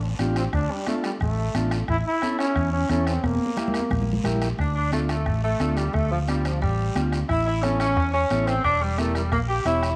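A dark, round fingered electric bass opens this fiery, passionate cumbia, joined almost at once by a reedy vintage combo organ, a soft-beater bombo and thick-skinned, high-tuned congas set back in the mix, and a raspy guiro. A bright, punchy trombone takes an up-front solo with light vibrato from 0.4 s, with a drum fill leading into the mellow, smooth-topped jazz-style saxophone section that carries the melody from 4.6 s. An echo chamber reverb and small room ambience surround the band in this fragment cut from a longer piece.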